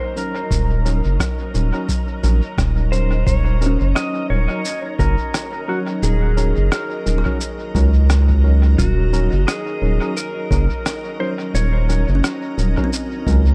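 A round, dark analog bass sits up front in this spacious, meditative ambient dub excerpt at 87 BPM in Eb minor, anchoring a single Ebm7 harmony over a swung sixteenth feel, with a shaker and rim click, muffled and pitched down under dub echo, while a deep electronic kick stays in the background. A clean, dark lap steel carries the melody with slide and volume swells through dub echo, over a calm, organ-like pad with ensemble chorus and its own reverb, and barky, slightly out-of-tune electric piano stabs echo through the mix. From 3.7 seconds a woody, hollow kalimba adds short arpeggios through analog delay in the background, and the whole mix is dry of reverb but heavy with echo.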